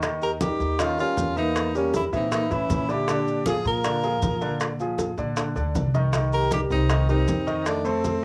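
With little reverb and the small-room feel of a home cassette recording, this danceable, sophisticated slice of Afro-Cuban jazz sets an up-front grand piano with audible action noise and a woody, thumpy pizzicato upright bass over tight, high-tuned bongos, background congas and grainy maracas, while a close-miked, tape-tinged tenor saxophone with vibrato carries the melody from 0.2 seconds beside a whispered, breathy trombone second line over chords moving from Eb9 through Edim7 and Bb9 to Cm7 and F7.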